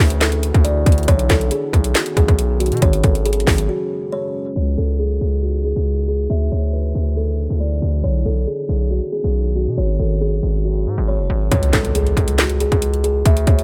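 A woody, hollow kalimba melody with tape echo opens this melancholic, dark half-time trap excerpt, over a heavy, saturated 808-style bass and an up-front trap kit of hard-clipped kick, sharp snare, handclaps and metallic hi-hats. The drums break off at 3.7 seconds, leaving the kalimba, bass and a deep, detuned ambient pad with chorus and reverb sitting in the background under a filter sweep. At 11.5 seconds the kit returns alongside a very quiet electronic impact, in a dry, low-pass-filtered mix.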